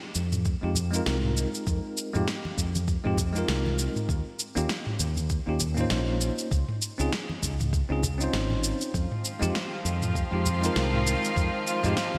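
Relaxed and unhurried, this sunset chillout groove moves with a gentle swing across a 4/4 pulse. A produced, tape-warm drum kit sits up front with a fat snare, shaker and toms, bathed in studio and gated reverb. A soft electronic kick and very quiet, close acoustic congas fill out the rhythm beneath it. A fingered electric bass, direct and amped, holds the low end. A bell-like tine electric piano, clean and up front, carries the accompaniment through a low-pass filter sweep and delay, over chords moving from Fm7 through Eb7sus2 and Dbmaj9 back to Fm7. At 8.9 s an intimate chamber string section enters with sustained, soft-attack chords played sul tasto with light vibrato, all set in a lush hall reverb with bright 1980s-style digital production.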